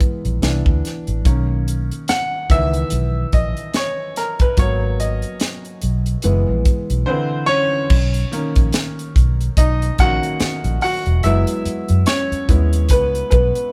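Lush 1970s-style soul in B major at 72 BPM with a 16th-note swing feel, this romantic excerpt from a longer piece features a clear, short-sustain baby grand piano carrying a solo through chords such as Cmaj7, Bmaj7, C#m7 and G#m9, backed by a tight funk drum kit with an airy, polished sound, a high-tuned snare and crash cymbal, and a dark, round, punchy foam-muted electric bass entering at 0.3 seconds, all captured as a band playing live in one room with light reverb.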